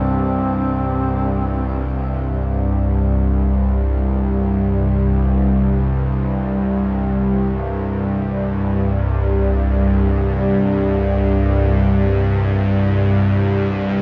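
Desolate and dark, this dark ambient drone excerpt in free time opens with a brief, mellow duduk phrase around C4, scooped and soft in attack with gentle vibrato, trailing shimmer reverb and tape echo until 1.9 seconds, over a bright, tense, string-like bowed drone held up front between C2 and G2 throughout, while from 4.4 seconds a deep, moody, evolving pad with chorus and shimmer sustains chords in the background, all wrapped in a huge, wet reverb with a cassette tape grain.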